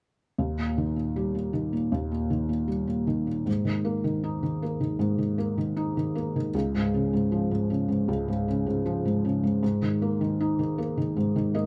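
Tender and emotional, this short pop excerpt moves at 78 BPM in 4/4 with a straight feel, in Eb major. A felt-muted upright piano carries the whole accompaniment from 0.4 to 11.7 seconds, ranging from Db2 up to Eb5. Its tone is soft, mellow and intimate, with audible action noise and a natural, up-front presence, set in light reverb. The harmony moves from Eb to Absus2, then Db, and back to Absus2. A brief felt piano fill closes the passage at 11.2 seconds, and the excerpt is cut from a longer work.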